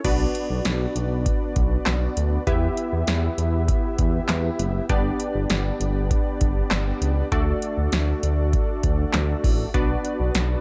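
This upbeat, bright synth-pop excerpt at 99 BPM opens with a funky, detuned sawtooth-and-square polysynth comp with chorus and filter pluck, a smooth sawtooth-and-triangle bass with ring modulation and vibrato, and an electro analog drum machine with deep kick, punchy snare, handclaps, metallic hats and crash. The parts cycle through Bm, Em, G and D in a straight 4/4. The drums carry a tape-warmed, small-room character, and a digital ambience surrounds the mix, which carries nothing above 7.9 kHz.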